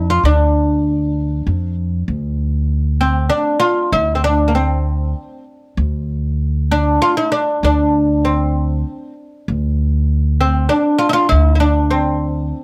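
A light reverb surrounds this recording, a short cut from a longer Persian modal piece with a melancholic, soulful mood. At 98 BPM in a straight 3/4, the ensemble is tuned to A4 = 442 Hz. The acoustic oud sits up front and carries the melody between Bb3 and F4, its plectrum-plucked double strings giving a woody, fretless voice that sits in a plate reverb. Beneath it, the acoustic upright bass, also up front, holds the low end between D2 and F2 with a pizzicato, thumpy tone from its steel strings. Both instruments play from the start, and after a brief opening passage the music moves into a new section at 2.1 seconds that runs to the close at 12.6 seconds.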